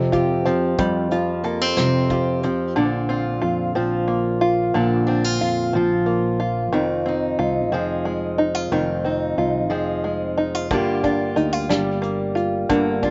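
A gentle 6/8 lilt at 60 dotted-quarter beats gives this short acoustic folk cut a pastoral, hopeful feel in Bb mixolydian, with chords moving from Fadd9 through Bbadd9 and Fm7 to Gm7. Up front, a fingerpicked archtop guitar with fresh strings and audible finger squeak carries the accompaniment, while a twangy, plunky open-back banjo spins percussive arpeggios, and a growly, punchy fretless electric bass sustains underneath. A soft, distant brush kit with tight kick and rolled-off top plays only from 0.1 to 2.6 seconds and again from 10.7 seconds, all in a dry, intimate recording.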